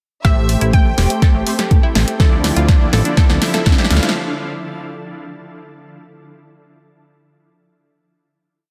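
Bittersweet and driving, this short progressive house build in D minor moves at 123 BPM in a straight 4/4, shifting from Am7 to Dmadd9 at 2.2 seconds. A deep electronic kick drives a four-on-the-floor pulse up front, while a deep house kit adds programmed closed and open hi-hats, a punchy snare backbeat and a drum fill, and a fat, detuned sawtooth bass plays a dotted rhythm underneath with sidechain pumping. A lush, full-bodied unison pluck carries a repeating riff through dub echo, doubled in unison in the background by a smooth symphonic violin section with vibrato, both lasting only until 1.4 seconds. Around them, a round, nasal analog pluck repeats a sixteenth-note riff over a pedal note, colored by chorus, phaser and vintage 12-bit sampler grit, and a soft supersaw pushes held, syncopated chords through a filter sweep and low-pass filter. From 1.1 seconds a shimmering, ethereal pad adds sustained chords with chorus and its own reverb, and a very quiet riser joins at 1.9 seconds as the build gathers momentum. 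Light digital ambience surrounds the dense, heavily limited modern master.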